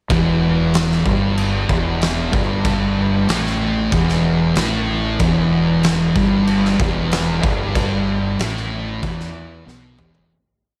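A straight 4/4 groove at 94 BPM drives this sludgy, ominous stoner and doom metal piece in E minor, with an oversized, low-tuned acoustic drum kit up front, delivering a boomy kick, fat snare, dark cymbals and toms in a big-room sound. Two thick, distorted fuzz guitars pick a single-note riff, one up front and the other in the background. A round, punchy fuzz bass doubles that riff in quarter notes, its overdrive and tube saturation adding grit under light small-room reverb, until a fade-out begins at 7.8 seconds and a drum fill arrives at 9.7 seconds.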